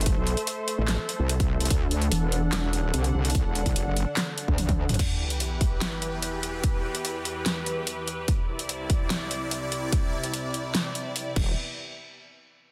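A lush, bright supersaw pad with phaser and sidechain pumping opens alongside a saturated sawtooth wobble bass with chorus and an up-front dubstep drum kit with a huge snare and metallic hats, joined by a punchy electronic kick, as this aggressive, menacing half-time heavy wobble dubstep drop in E minor at 146 BPM brings in an FM metallic wobble bass with overdrive and then lands a sub drop at 5.0 seconds before the pad and drums carry on over Em and Cadd9 chords beneath a dense, heavily limited master with light reverb.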